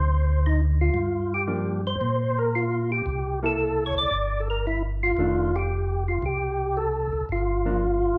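Swinging eighth notes at 114 BPM in 4/4 drive this soulful soul jazz organ trio excerpt in F major, moving through Dm7, Gm7, C6 and F13. A percussive tonewheel organ carries the melody with a round, third-harmonic percussion bite, chorus vibrato and a slow rotary speaker, while a second, mellow tonewheel organ voice plays a dark, clean bass line with audible key click through its own slow rotary speaker, both placed up front. From 1.5 s a hollow-body electric jazz guitar adds fingered, shadowy accompaniment lower in the mix, with the band playing live together in a large studio room with moderate reverb.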